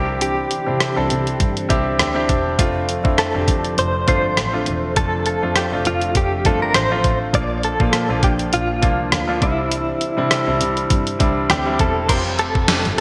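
Nostalgic and glossy, this 1980s-style pop excerpt in F major moves at 101 BPM with a light 16th-note swing, as a clean, direct-recorded electric guitar carries the melody through tremolo and delay over a clear, up-front baby grand piano that adds a fill from 1.4 to 2.6 seconds. A thumpy, sampler-style drum machine with gated reverb on the snare sits prominently, while a rich, bowed double bass with vibrato and portamento anchors the low end and a vintage, warbling string-machine cello pad holds sustained chords with ensemble chorus in the background. At 12.1 seconds a dark, distant horn section punches in with delayed stabs, all set in a lush hall reverb and bright digital production.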